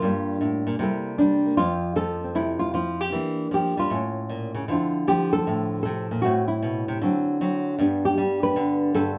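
A woody, full-bodied nylon-string guitar with old strings and a deep, thumb-plucked classical tone plays solo and up front in this short, swinging, playful jazz excerpt, ringing through a moderate studio reverb as it moves through jazz chords such as Gm7, C13 and Fmaj7 before a new section begins at 4.7 s on Dm9.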